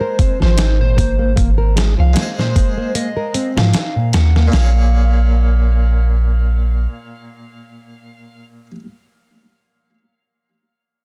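A 4/4 groove with a light swing on the sixteenths drives this trip hop fragment, hypnotic and smoky in mood. Up front, a compressed sampler-style drum kit lays down a thumpy kick, medium-tuned snare and hi-hat, while a soft, round 808-style bass adds deep sine tones that decay through tube saturation. A dark, slightly broken-up electric slide guitar, played with fingerpicks, carries the melody through tape echo, and a nasal, bright French-style harpsichord accompanies with tremolo, vintage 12-bit sampler grit and its own echo. A thumb-plucked nylon-string guitar spins classical arpeggios until 4.9 s, shortly after the harmony shifts from Ab to Bbm7 at 4.5 s and the drums drop away at 4.7 s. The whole sits in a digital ambience under a dense, heavily limited modern master.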